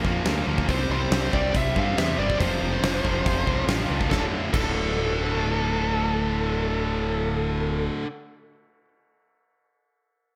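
A high-gain lead guitar with a warm, distorted tone carries the melody from 0.7 seconds over a heavy, driving hard rock excerpt at 140 BPM in D minor, where an overdriven rhythm guitar and a background high-gain guitar churn out riffs on Bb, C, F5 and D5 chords, a punchy fingered bass anchors the low end, and a huge arena drum kit with gated reverb, bright cymbals and a punchy kick pounds until 4.7 seconds, all set in a light room ambience with bright 1980s-style digital production.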